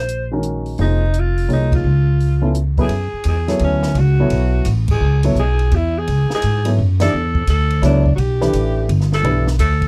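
A growling, raspy alto saxophone, heard distant and roomy with vibrato, carries the melody over a woody, up-front pizzicato upright bass from the start of this hypnotic, intense modal jazz cut in F# minor at 170 BPM in a swung 3/4, joined at 0.1 seconds by a compact cocktail drum kit with dark cymbals, a high-tuned snare and a tight kick, and at 0.3 seconds by a mellow, intimate baby grand piano with audible action noise, as the band hits accents at 1.7, 4.8 and 7.0 seconds and the harmony moves from Bbm11 and Db7alt to F#m11 and Em11 in a dry, dark production.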